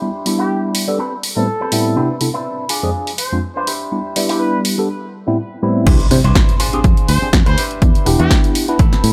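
Sunny and feel-good, this short cut of filtered disco house with a light 16th-note swing opens on a bright, up-front tine electric piano drifting through Em7, Am9, Cmaj9 and Fm6 under phaser and a filter sweep, alongside a twangy envelope-filtered guitar riff carrying sampler grit. They are soon joined by an overdriven punchy analog drum machine and a smooth-topped jazz trumpet section trailing dub echo, until the drop at 5.9 seconds brings in a dark, round fingered bass, an overdriven electronic kick and a very quiet impact, with sidechain pumping across most parts and light reverb.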